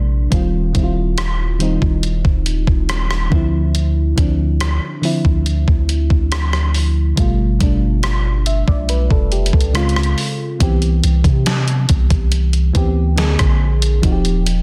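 Romantic and smooth, this contemporary R&B piece moves at an unhurried 70 BPM in straight 4/4, cut from a longer work. A mellow FM electric piano carries the chords from the start, its soft, round tone warbling through a chorus effect with a faint noise layer and a vintage character, sitting up front in the mix. Beneath it, a long sustained 808-style bass supplies deep, sine-like low notes with a fast attack that decays into darkness. A gated 80s digital drum machine enters at 0.3 seconds with a thumpy kick, hi-hat, rim click and a snare drenched in gated reverb, sounding electronic and sampler-like, as if re-recorded in a large room. The harmony drifts through lush extended chords, opening on Eb69 and passing through Dm9, G9 and Dbmaj7 before shifting at 10.6 seconds to a new section on Cmaj7 and Bb9, then returning to Eb69. The dense, heavily limited modern master keeps the sound close and dry, with little reverb beyond the drums' own gating.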